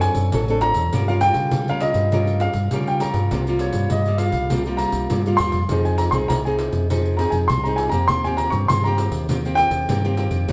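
An intimate grand piano with audible action noise carries the yearning, lively melody of this samba and choro fragment, over a fingerpicked nylon-string guitar with fresh strings and finger squeak, a dark, round fingered electric bass, and a jingly pandeiro played with soft hands, while a breathy clarinet with light vibrato adds a brief jazz-style second line from 3.6 to 4.6 seconds, the whole band captured live together in a wet stone room.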